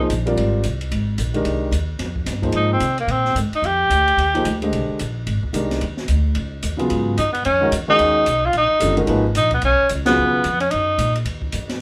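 A warm tenor saxophone leads this searching, spiritual modal jazz excerpt at a brisk swing, its vibrato-laden, scooped phrases sitting up front in short bursts before a longer line from 7.2 s. Beneath it, an intimate grand piano with audible action noise comps until 10.4 s, a woody pizzicato upright bass holds the bottom, and a dark, smooth drum kit with boomy kick and dark cymbals keeps time in a small, live-sounding room. The harmony shifts upward at 6.9 s, and the whole band hits an accent at 10.0 s.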